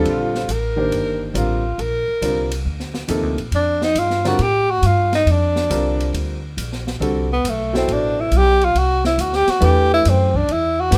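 A smooth, vintage upright piano and a growly, thumpy pizzicato upright bass open this spiritual, open modal jazz excerpt in Bb major at 138 BPM with a swung 4/4 feel, joined at 0.1 seconds by a breathy tenor saxophone soloing up front with vibrato and scooped notes, and by a softer acoustic drum kit with dark cymbals, a medium-tuned snare and a boomy kick, all in light reverb as the harmony moves from Bbmaj9 to Cmaj9 at 7.0 seconds.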